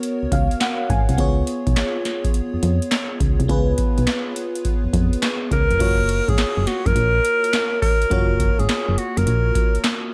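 A lush, dreamy FM electric piano with a soft pad layer opens with a fill over a booming analog drum machine, its deep kick, crisp snare, handclaps and metallic hats sitting up front in this punchy, bouncy new jack swing R&B piece, cut from a longer work. A round, solid FM bass enters at 0.2 seconds, while the piano shimmers with chorus and tremolo. At 5.5 seconds a mellow alto saxophone takes the solo melody in a jazz style, with vibrato, scooped notes and digital delay, over a digital ambience.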